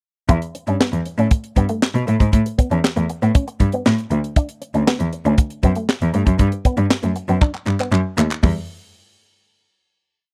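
A bowed cello, clear and focused with a touch of vibrato, sits up front carrying a fat, syncopated boogie bass line with chromatic approach notes through this short, slick early-eighties boogie funk piece in E dorian at 118 BPM. A tight, dry acoustic kit drives a mid-tempo boogie beat, its high-tuned snare layered with handclaps, while a bright, twangy electric guitar picks a muted single-note line through an envelope filter and ensemble chorus over chords moving from Em6 to A, Dmaj7sus2 and Gmaj9. After a drum fill from 7.4 s, the breakdown resolves onto a final Em chord at 8.4 s, all captured in a close, 1970s-style small-room sound.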